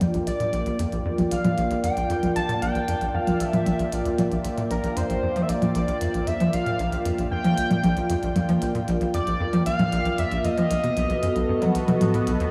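A driving, punchy sequencer bass riff anchors this cosmic, expansive stretch of ambient space music at 115 BPM, joined by an evolving, full-bodied resonant pad holding sustained chords from Bb6 to B7 at 10.7 seconds, a shimmering pulse-width lead melody entering at 0.3 seconds, and a minimal click drum kit of overdriven hi-hat and toms, all bathed in a huge, wet ambient reverb with a 7.7-second tail.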